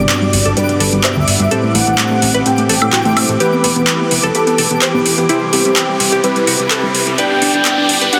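Progressive house at 127 BPM, bittersweet and driving, this build-up cut from a longer piece moves through Gmaj7, Am7, Em and C as filter sweeps run across the glassy, crystalline wavetable pluck arpeggios, the retro, glossy chorused polysynth stabs and the thick, bold unison lead, whose lush chorus, 12-bit sampler grit and dub echo carry a melody between G4 and G5. Underneath sit a fat, detuned analog bass with a filter sweep and an up-front, overdriven deep house kit of handclaps, metallic hi-hats and woodblock, while a very quiet, ethereal pad shimmers and a twinkling granular texture at D6 sparkles in the background. A background riser enters at 5.5 seconds, and the whole sits in a huge ambient reverb under a dense, heavily limited modern master.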